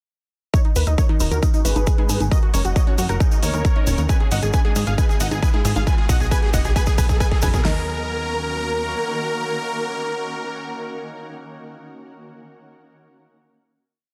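Opening at 0.5 seconds on an Ebm7 chord, this bittersweet, soaring uplifting trance piece in Eb minor at 135 BPM builds over a punchy, overdriven big-room kit with a four-on-the-floor kick and huge snare, programmed electronic hats and congas, a grainy hand-played tube shaker, a galloping sixteenth-note analog bass, a round background arpeggio pluck with chorus, and a very quiet riser from 2.5 seconds. Up top, a huge, euphoric supersaw lead plays a repeating riff over a pedal note in thirds and sixths, with tape echo, sidechain pumping and a filter sweep through the build, doubled in unison by a catchy plucky lead, while an ethereal shimmering pad with chorus and reverb sustains chords from 1.2 seconds. After a drum fill, the percussion drops out at 7.6 seconds and the bass follows shortly after, leaving the leads and pad to ring out on a final Ebm7 chord in a dense, heavily limited modern master.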